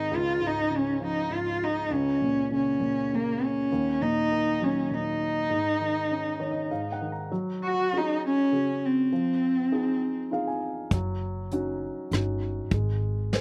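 A softly reverberant outdoor recording carries this hopeful, nostalgic acoustic folk-pop ballad in 3/4 at 100 BPM, where a dark, woody bowed cello with vibrato and a slapback echo sings the melody over an intimate baby grand piano with audible action noise, moving from Db through Bbm and Ebm to Gbsus2 and Fm7, before a thumpy pizzicato upright bass and a smooth brush drum kit with a punchy kick enter at 10.9 seconds, in a fragment cut from a longer piece.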